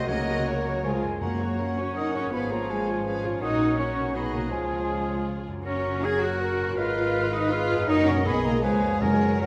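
Restless and urgent, this classical excerpt in F# major moves at 161 BPM in 3/4 with a rubato feel, as two violin sections carry the melody and a second line in the background, joined by other lines from an airy, distant flute, an oboe and a mellow clarinet over lush, vibrato-rich violas, cellos and woody double basses. A mellow, soft-attack bassoon accompaniment and a dark French horn section holding chords sit beneath a bright, ringing harp playing very quiet arpeggios, while timpani struck with hard mallets sound from 0.1 to 1.7 seconds and return at 9.0 seconds. A wet scoring-stage reverb surrounds the orchestra, with the close cello section standing forward.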